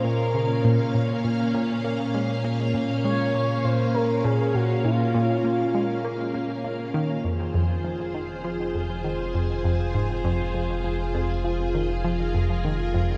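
Ambient, sequencer-driven space music in F minor at 100 BPM, cosmic and hypnotic, where a lush, vintage string machine holds sustained slow-attack chords throughout under a nasal, decaying analog pluck riff coloured by chorus, phaser and tape echo, while a smooth, expressive synth lead with vibrato sings a melody through lush chorus and tape echo until 6.6 seconds, a filter sweep runs through the opening 7.2 seconds, and a deep, round analog bass joins at 7.2 seconds as the harmony moves from Bb minor to F minor, all set in a vast cathedral reverb with a cassette-tape character.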